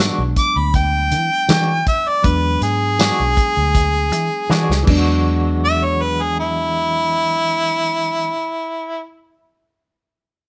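Soulful and laid-back, this straight-eighth soul blues excerpt moves at 80 BPM in E mixolydian, opening on an E9 chord. An up-front, punchy harmonica carries the solo melody from 0.4 seconds, with vibrato, scooped notes, overdrive and plate reverb. Beneath it sit a dark, foam-muted fingered bass, a reedy electric piano in the background, and bright, twangy electric guitar stabs through an envelope filter and tremolo. A small-room soul drum kit with dark cymbals, a tight kick and tambourine plays a fill at 4.5 seconds and drops out at 5.1 seconds, leaving the other parts under light reverb.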